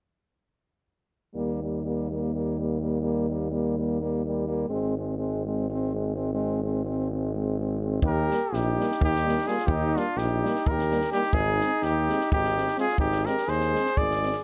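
Balkan brass band folk in a festive, virtuosic 7/8, cut from a longer piece, opens with a clear, present French horn, a distant, roomy euphonium with vibrato and an up-front tuba bass laying down the accompaniment from about 1.4 seconds, until at 8.0 seconds a dry, punchy cocktail drum kit with a high-tuned snare arrives alongside a warm cornet with light vibrato carrying the melody up front and a mellow, smooth-topped flugelhorn on a second line, the brass all played in a classical style under light reverb.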